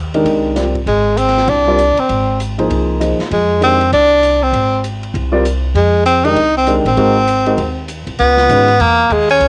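A woody, pizzicato upright bass opens this hypnotic, cool modal jazz excerpt, a swung 197 BPM in F dorian, joined almost at once by a polished concert grand piano with cassette-tape colour and a dark, smooth drum kit with a boomy kick and rolled-off top, before a breathy, subtone tenor saxophone with light vibrato takes the up-front melody at 0.9 s, also through cassette tape, as the harmony moves from Fm7 to Ab7 and then C#m7 and the piano drops out at 8.7 s, heard in a small room with moderate spring reverb and the grain of a home cassette recording.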